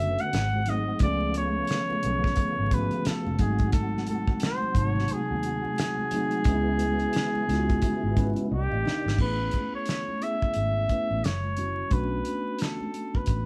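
R&B and neo-soul with a late-night, introspective mood at 88 BPM, this swung excerpt features a clear, up-front flugelhorn melody with scooped notes over a mellow tine electric piano, a round foam-muted electric bass, very quiet high-tuned congas and a damped 70s drum kit with a fat snare and dark cymbals entering at 0.2 s, while a lightly overdriven tonewheel organ on slow rotary speaker holds background chords until 9.2 s, as an electric piano fill and a drum fill lead into a new section, all in a live room with light reverb and vinyl crackle.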